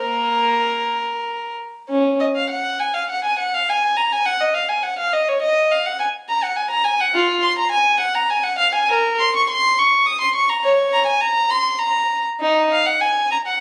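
In a flexible three-beat metre, with the pulse stretching and easing freely, this solo violin passage unfolds as a baroque-style suite movement with a solemn, introspective character. A single bowed violin carries the whole piece from the opening through to 13.6 s, its gut-string tone and reedy edge shaped by light vibrato in a period style. The line moves between low and high registers, and it sits up front in the sound. A moderate stone-room reverb surrounds it, while the phone capture picks up the ambience of a club in the space. The music is cut from a longer work, so it begins and ends mid-thought.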